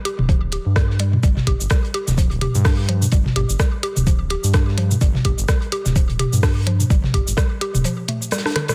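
Minimal techno at 127 BPM with a swung 16th feel, sparse and clinical in mood: a soft, up-front electronic kick anchors clicky cabasa, hi-hat and rim clicks with a softly clipped snare, while a dark, smooth acoustic soul kit of hi-hat and snare sits in the background, overdriven layered electronic toms add grit, a deep, mellow analog bass with sidechain pumping enters at 0.2 s, and a woody FM mallet-like pluck riff carries chorus, digital delay and sidechain pumping, the whole dry and densely limited until a drum fill at 8.3 s closes this short excerpt.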